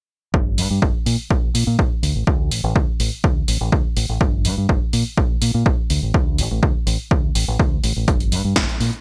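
A deep, dark fingered electric bass and a punchy electronic kick drum open this short filtered disco house excerpt together at 0.3 seconds, setting a sensual, nostalgic mood in a steady, straight 4/4 metre. The bass sits low and round, heard direct and amped, with sidechain pumping and a low-pass filter, and a filter sweep runs across its whole span. The kick is analog-flavoured and tape-warm, re-recorded in a small room and placed up front. From 0.6 seconds an analog drum machine adds hi-hat and a punchy snare, its hats carrying sidechain pumping and the kit dressed in gated reverb. The overall sound is bright and dry in a 1980s-style digital manner, with the bass and drums kept close and forward until the parts drop away between 8.7 and 9.0 seconds.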